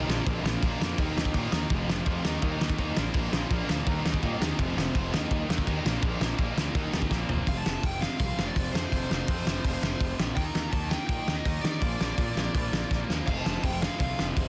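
This energetic, rowdy punk rock clip at 166 BPM in straight 4/4 opens at once on a wall of picked, overdriven guitar riffs. A cranked stack guitar and a companion electric guitar, both bright, sit in the background, while a third, double-tracked guitar plays very quietly beneath them until 7.5 seconds. A growly, fuzz-laden picked bass, direct and amped, drives underneath, and a loose indie drum kit sits up front with a fat snare, tight kick and a saturated, gritty, warm sound with a rolled-off top, adding a short fill into the second section and another near the end. The riffs cycle through Bb, Eb and F, then shift to F5, Eb5 and Bb power chords as a smooth, dark-toned lead guitar enters with a high melody. The sound is dry, with little reverb and a dense, heavily limited modern master, and the piece is cut from a longer recording.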